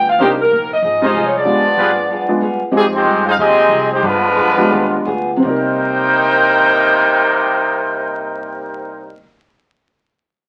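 The sound is that of a very old 78 rpm record, crackling with vinyl noise and bathed in wet studio reverb. This dramatic, swinging jazz fragment, cut from a longer piece, is in C minor and 4/4 at a brisk 161 to 189 BPM, and it slows down between 2.7 and 5.4 seconds. A tight, up-front saxophone section with vibrato carries the opening melody while a mellow trumpet section adds smooth-topped stabs. After a short break, a close-miked trumpet section with a soft attack and light vibrato takes over the lead at 2.8 seconds. Beneath them, a muted trombone section plays a nasal, brilliant second line through a straight mute, and a grand piano with audible action noise gives intimate support. A boxy, ladder-braced acoustic guitar is picked in the background, and a woody, thumpy pizzicato upright bass on steel strings anchors harmony that moves from Cm7 through Fm7 and G7b9 before returning to Cm7.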